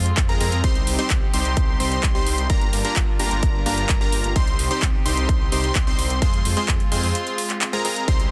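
Festival progressive house in C minor at 129 BPM, this powerful, anthemic excerpt drives a punchy, up-front electronic kick and a big-room kit with handclaps and metallic hats under a thick, chorused detuned saw bass, a bright supersaw stab riff and a catchy plucky unison lead arpeggiating high with digital delay, all of those except the kick and kit pumping with sidechain, while a distant, reedy chamber string section holds sustained chords in the background through Fm, Cm and Gm7 changes before a break at 7.2 seconds, in a dense, heavily limited modern mix.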